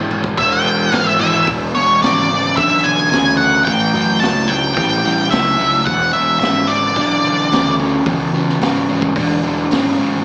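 Blues rock and southern rock in a power-trio vein, this raunchy, gritty excerpt moves at 109 BPM in a straight 4/4 in E mixolydian, with a double-tracked, overdriven semi-hollow guitar riff carrying the low end through E, E7 and A7 changes over a growling, overdriven picked bass. A dark, fuzzy octave-fuzz lead guitar with slapback echo sits up front from 0.4 to 7.7 seconds, and its solo opens the clip. The vintage kit has a punchy kick, high-tuned snare and dusky cymbals, and the whole performance sounds like a live club gig heard through the venue's PA, with small-speaker boxiness and club reverb.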